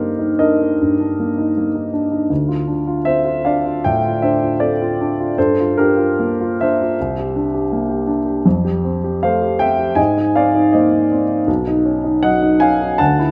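A warm, up-front grand piano opens this nocturnal, wistful impressionist solo at a rubato 78 BPM in 4/4, ranging from B1 to A5 through lush chords from Ebmaj7#11/G and Dm7 to Gm9, C9 and Fadd9 before drifting to Abadd9 and Badd9, all set in a moderate scoring-stage reverb and cut from a longer piece at 13.3 seconds.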